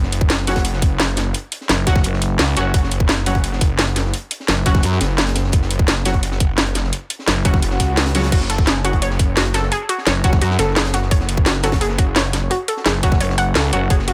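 Dark technical drum and bass at 172 BPM in F# minor, this futuristic, aggressive excerpt drives on an up-front tight electronic kick, a layered drum and bass kit with cracking snare and metallic hats, and a very quiet, smooth breakbeat kit beneath a thick, detuned saw bass with chorus, overdrive and sidechain pumping, while a bold orchestra-hit-like synth stab with dub echo punctuates throughout, a growling FM bass cuts in from 1.7 seconds, a background swell appears at 7.7 seconds, and a warbling, lo-fi pluck arpeggio with chorus and dub echo enters at 8.3 seconds in a dry mix.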